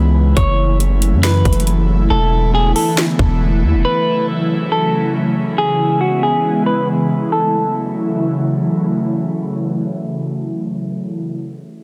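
An airy, breathy pad with chorus, phaser and sidechain pumping opens this hazy, ethereal half-time cloud-rap excerpt alongside a deep, sine-toned 808-style bass that stops at 3.8 seconds, while a trap kit with hard-clipped kick, sharp snare and metallic hats drops out at 3.3 seconds and a dark, clean semi-hollow electric guitar carries the melody through tape echo until 8.6 seconds, all set in light reverb under a dense, heavily limited master.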